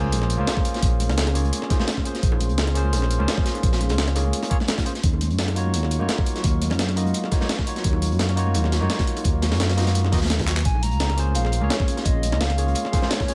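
Melancholic and dreamy, this excerpt of liquid drum and bass moves at 171 BPM in Bb minor, drifting between Bbm9 and Ebm9 chords as a barky tine electric piano with dub echo and a glassy FM pad, dark and ethereal under chorus, phaser and reverb, float behind a smooth, up-front sawtooth-and-triangle synth bass. The drums stack a gritty, pitched-up sampler-style break with handclaps and a high-tuned snare, a dark, rolled-off second breakbeat kit in the background, a thumpy, tape-warm kick from 0.6 seconds, and warm congas and bongos, with a very quiet electronic impact opening the passage. A drum fill at 10.5 seconds ushers in a hollow, woody clarinet-like synth lead with chorus, vibrato and digital delay from 10.6 seconds, all set in a small room ambience.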